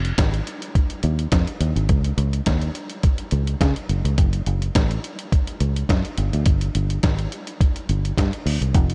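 A light reverb gives this short cut from a longer early-eighties boogie funk piece a slick, funky sheen at 105 BPM in a straight 4/4. Up front, a fingered electric bass with a dark, round, foam-muted tone plays across the full 8.9 seconds, ranging from F1 to Db3 with a punchy, direct-and-amped character. Beside it sits a lo-fi sampler-style drum kit, compressed and pitched down into a muffled sound, with a thumpy kick, a medium-tuned snare and hi-hat.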